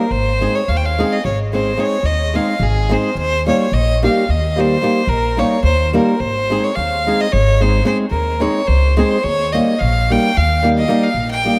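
Balkan folk in 11/8, this short passage from a longer piece has a wild, virtuosic mood. A single fiddle carries the melody up front, its tone clear, nasal and biting, with light vibrato, an airy bow and an intense, slightly boxy edge, trailed by a diffuse ambient delay. Beneath it a fingerpicked flamenco guitar supplies warm acoustic accompaniment coloured by a subtle chorus. An upright bass, also up front, is plucked on gut strings for a woody, dark and thumpy low end. The harmony swings between Ab and Eb, and a moderate plate reverb soaks the mix in a dreamy haze.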